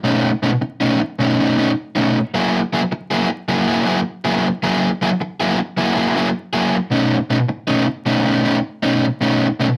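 Vinyl crackle and a moderate studio room frame this laid-back, soulful blues fragment at 105 BPM in swung 4/4, where a lone overdriven semi-hollow electric guitar, picked and up front with a hollow-body tone, plays solo over a B9 to F#9 and back to B9 change until 9.7 seconds.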